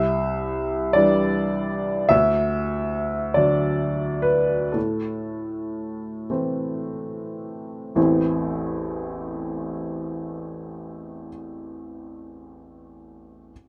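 A clear, woody upright piano plays alone, up front and intimate with audible action noise and long sustain, in a reflective, melancholic neoclassical minimalist excerpt in a rubato 6/8 that slows from 1.0 to 8.0 seconds, moving through Cadd9, D and Am within a moderate studio reverb.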